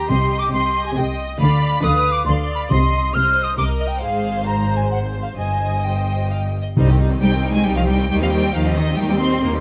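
A mellow, hollow silver flute with airy vibrato carries a second line close to the ear until 6.5 seconds, in this restless, dramatic fragment of a quick classical-period movement for symphony orchestra in C minor, in 3/4 at 136 BPM. Beneath it, a lush violin section sings the melody with focused vibrato, while a second violin section adds another line with a soft, expressive attack. Violas supply an intense, clear accompaniment, and cellos with a smooth, even tone join an up-front double bass section to anchor the bass. Timpani with calf heads and medium mallets sound dry and in the background during the opening and again later, underlining the tension. The harmony circles back to C minor throughout, and the passage moves into a contrasting section at 6.8 seconds, all captured with close, detailed microphones and light reverb.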